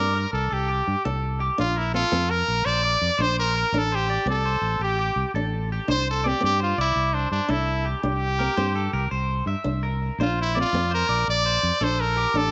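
A 12/8 groove with a straight feel drives this danceable, carefree highlife guitar band passage, cut from a longer piece. A brilliant, forceful trumpet carries the solo melody up front with vibrato and scooped notes in a punchy pop style. Beneath it, a small fingerpicked nylon-string guitar accompanies, a twangy, slightly broken-up electric guitar plays picked arpeggios through tape echo, and a dark, round fingered electric bass sits close and direct, all bathed in a moderate echo-chamber reverb with a softened top end.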